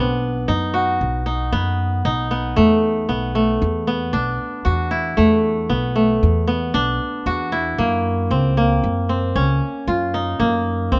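Contemporary instrumental chamber music in 5/4 at 115 BPM, urgent yet pensive, built on crisp, ringing fingerpicked kora arpeggios up front over woody pizzicato upright bass, with a delicate, bell-like large celesta glinting in the background from 0.7 to 2.6 seconds over the opening B chord before the harmony moves to E5 and then F#, all in a snug booth ambience, cut from a longer piece.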